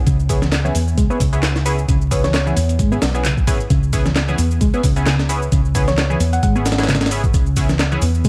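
A gritty, pitched-up sampler-style breakbeat kit sits up front with a thumpy kick and a high-tuned snare, compressed and tape-colored under studio reverb. Beside it, a round, dark, hollow-body electric bass plays fingered and amped, equally forward in the mix. This funky, raw breakbeat excerpt swings its sixteenths on a single minor-seventh chord. A mellow, reedy electric piano carries the riff through fast tremolo, tube saturation, lo-fi sampler grit and digital delay. A quieter layered garage kit adds handclaps, warm hats and shaker recorded in a small room, while a nasal, band-passed sawtooth chord stab cuts through with chorus, phaser and delay. A tine-like FM pluck with a telephone-filtered tone surfaces only briefly, at 2.2 and 5.9 seconds, all over a steady bed of vinyl crackle.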